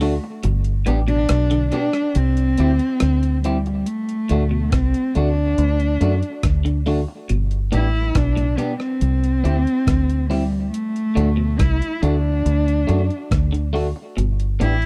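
A dry, close 1970s-style studio sound frames this laid-back roots reggae piece, cut from a longer track and moving through G, C and D. A woody, bowed cello with vibrato carries the melody up front with tape echo, over a round, punchy foam-muted fingered bass, a slightly broken-up picked guitar sharing that echo, and a bright, twangy clean guitar playing arpeggios through subtle chorus. The gritty, overdriven sampler-style kit keeps hi-hat and rim click going throughout, while its thumpy kick drops out from 0.4 seconds and returns at 3.9 seconds as the next section begins.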